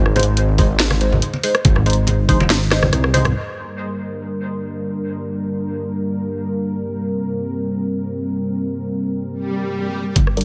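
Deep dubstep at 141 BPM in a brooding, meditative half-time G phrygian, this excerpt opens on a drop over Ab, where a rumbling, saturated saw bass, an overdriven knocking electronic kick, an up-front garage kit with cracking snare and warm hats, low-tuned compressed congas in the background and a muted filtered chord stab carrying phaser, subtle chorus and dub echo play until a drum fill and band accent lead at 3.4 seconds into a moody, chorused analog pad sustained on Gm, with an electronic swell arriving at 9.4 seconds and a riser at 10.2 seconds as the bass, drums, congas and stab briefly return.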